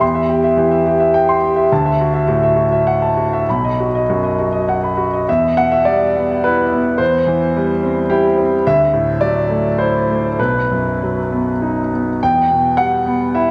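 Rubato in 3/4, drifting between 96 and 112 BPM, this melancholic, wistful fragment of a longer neoclassical minimalist piece sits in E minor and moves through a short cycle of C/E, Dadd9, B and Em that begins again at 7.0 s. A solo concert grand piano plays up front across the full 13.5 seconds, spanning deep bass to upper register, with an intimate, boxy tone, long sustain, audible action noise and a touch of tape echo. The whole mix is soaked in a lush 2.6-second hall reverb with a dreamy cassette-tape character.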